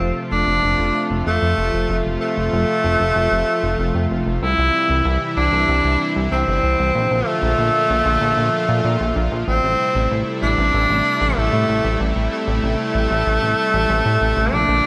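A bright 1980s-style digital production sits in a moderate plate reverb, giving this moody, driving synthwave cut from a longer piece a polished sheen. Up front, a clear tenor saxophone carries the melody in a jazz-style solo with a soft attack and vibrato, its tone distant and roomy and trailed by delay. Beneath it, a lush unison pad of thick, detuned sawtooth voices holds sustained chords, warbling through chorus with a slow attack and long release. A glossy, nasal synth bass, also up front, pairs pulse-wave and sawtooth tones with a quick filter pluck, saturation and chorus for a retro edge. The harmony moves from F through C and Bb before settling on Am7 as a second section begins at 9.5 seconds.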